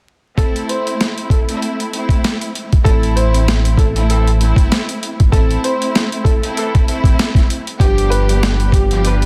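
Boom-bap hip-hop in A minor at 97 BPM with a moody, gritty swing, this excerpt opens at 0.4 seconds with a worn, woody, slightly detuned upright piano melody over lush, distant bowed strings with vibrato and portamento and an up-front, compressed, pitched-down sampler-style drum kit with a thumpy kick, high-tuned snare and hi-hat, before a deep sine sub bass with octave arrives at 2.9 seconds and a mellow, punchy horn section adds stabs through tape echo in the background from 4.1 seconds, all over vinyl crackle in a dry, dense, heavily limited master as the Am chord gives way to G7 near the end.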